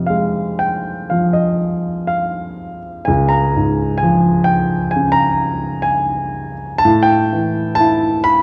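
Classical solo piano in a lyrical, rubato vein, this reflective, melancholic fragment cut from a longer piece features an up-front concert grand with deep bass and short sustain moving from Fm to Db to A5, set in a moderate scoring-stage reverb and colored by the warbling pitch drift of worn cassette tape.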